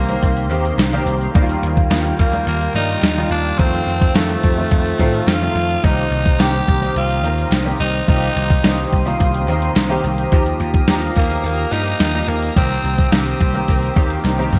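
A raspy tenor saxophone melody with delay leads this moody, dramatic 1980s-style pop excerpt in C minor at 107 BPM, over bright concert grand piano accompaniment with ensemble chorus, a sweeping detuned pad with phaser in the background, growly vintage slap bass, a thumpy up-front digital drum machine with gated reverb, and barely audible crisp handclaps, all in a lush hall, before a warm bowed violin section enters at 13.7 seconds and a drum fill arrives at 14.2 seconds.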